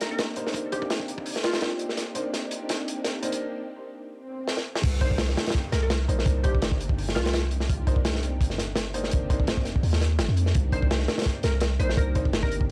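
A crunchy, saturated breakbeat kit sits up front through this dark, nostalgic drum and bass excerpt at 168 BPM in C minor, its tight kick, medium-tuned snare and dark cymbals given a rolled-off top, with fills at 2.0 and 4.5 seconds and a break during which a quiet electronic swell leads into the drop at 4.8 seconds, where a deep, mellow 808-style bass enters. Underneath, a silky, warbling string machine holds a Cm9 chord throughout while a smooth vintage grand piano plays stabs with sampler grit, dub echo and a filter sweep across the build-up. A glassy, crystalline wavetable pluck with detuned unison, ring modulation and dub echo drifts in the background in short melodic phrases, all coloured by light reverb and the tape character of a home cassette recording.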